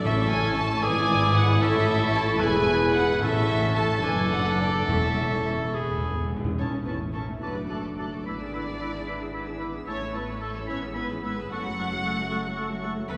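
In a 6/8 of 69-77 BPM in dotted quarters, played with rubato, this quick, cheerful and graceful classical-period orchestral movement in A major has muted violins carrying a veiled, con sordino melody, while a second muted violin line, a clear, present oboe, a warm clarinet and an airy flute in the background weave supporting lines. Muted violas and lush, dark cellos and double basses fill in the accompaniment and bass beneath mellow sustained French horn chords. Timpani with calf heads sound in the background, with a fill at 5.7 seconds leading into the second section, and the whole passage blooms in a wet church reverb.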